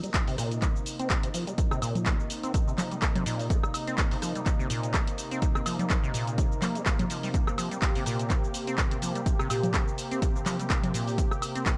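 This gritty, driving acid house excerpt opens on a Cm7 chord, with a smooth, detuned sawtooth pad sustaining chords under sidechain pumping and chorus. Alongside it, a deep, rubbery acid bass riff with a resonant filter pluck runs under a filter sweep, its tone saturated and dark through tube saturation, cassette tape coloring, subtle chorus and digital delay. A dry analog drum machine sits up front with cabasa, congas, handclaps, hi-hat, rim click and woodblock, and an electronic kick drum, the loudest part, joins at 0.1 seconds with a punchy thump. The groove moves at 125 BPM in 4/4 with a 56% swing on the sixteenths, in C minor. Near the end, at 9.5 seconds, a metallic, ringing vibraphone played with medium hard mallets sounds a single brief G4 with delay, set in the background, while light reverb rounds out the mix.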